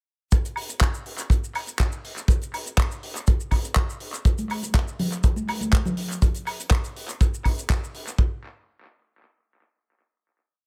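A four-on-the-floor kick drives this sleek, sensual nu-disco piece at 122 BPM in a straight 4/4, its tight, natural acoustic thump sitting up front from 0.3 seconds. Alongside it, a tight funk kit plays a disco backbeat of handclaps, closed and open hi-hat, shaker and high woodblock, recorded in a small room and set further back, with an analog delay trailing its strokes. The whole piece is essentially one drop running to 8.2 seconds, after which a final hit rings out until 10.7 seconds. Congas appear briefly from 4.4 to 6.0 seconds, their warm, thick-skinned, high-tuned tone mixing muted strokes with high and low drums in a live room. Studio reverb gives the mix an echo-heavy sheen that suits its sleek, sensual mood.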